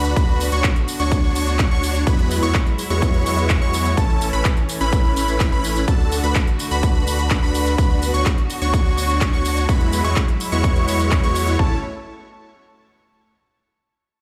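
A festival progressive house drop bursts in at once with an uplifting, anthemic sweep: huge, lush supersaw chords carry a phased riff with delay, a bright, catchy plucky unison lead spins high arpeggios with subtle chorus, and clear, biting bowed strings hold sustained chords in the background. A deep, thick saturated sub bass pumps under sidechain alongside the other melodic parts, and a crisp-hatted big-room kit adds handclaps, hi-hat and tambourine, while a punchy, tape-warm electronic kick joins up front at 0.2 seconds. The whole sound rings out as if played on a big sound system in a bare room, with large studio reverb, before the drop gives way to a new section at 11.6 seconds.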